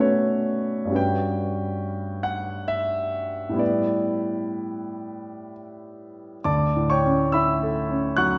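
In a rubato 3/4 that drifts between 61 and 74 BPM, this short fragment of a longer impressionist classical piece unfolds at an unhurried, breathing pace. A single concert grand piano carries everything, ranging from D2 up to F#6 in D major, tuned to A4 = 441 Hz. Its tone is clear and natural, sitting up front with a deep bass and long sustain. The harmony moves through Bm9, Gmaj7#11 and A9sus4 before settling onto a Dmaj9 at 6.5 seconds, where a new section begins and runs to the close at 8.4 seconds. A wet recital hall reverb of about 1.5 seconds surrounds the piano with the air of a church or concert hall, lending the music a hazy, serene glow.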